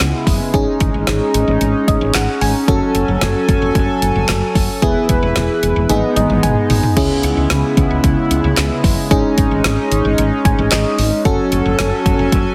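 Cool and melancholic, this 112 BPM synth-pop excerpt in C# minor sets a glassy, bell-like FM electric piano with chorus and tremolo, adding fills at 1.6, 5.9 and 10.2 seconds, over a shimmering pulse-width pad, a round, woody fretless bass and an up-front deep house kit with deep kick, handclaps and a drum fill into the second section at 7.0 seconds, all bathed in lush hall reverb with a heavily compressed radio sound.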